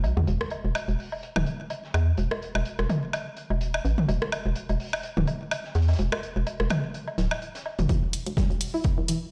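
Minimal techno at 126 BPM with a 16th-note swing, clinical and sparse, where a hollow, bouncy FM bass pumps under a faint, gritty breakbeat kit of hi-hat and snare and overdriven rim clicks, toms and woodblock with digital delay, until at 7.9 seconds the percussion drops out and a punchy dry kick and a twangy, bright resonator pluck with chorus and a filter sweep arrive for a build-up, joined a moment later by a tape-flavoured hi-hat, all set in a stone room's reverb within this short cut from a longer piece.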